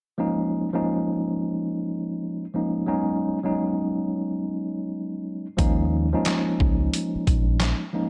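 Swung at 89 BPM in 4/4, this confident, soulful boom-bap hip-hop excerpt opens with a mellow, up-front tine electric piano alone on Eb9sus4 and Db9sus4 chords, until at 5.6 seconds a gritty, pitched-down sampler-style drum kit with thumpy kick, medium-tuned snare, handclaps and hi-hat arrives alongside a dark, round, punchy fingered electric bass, all in light reverb.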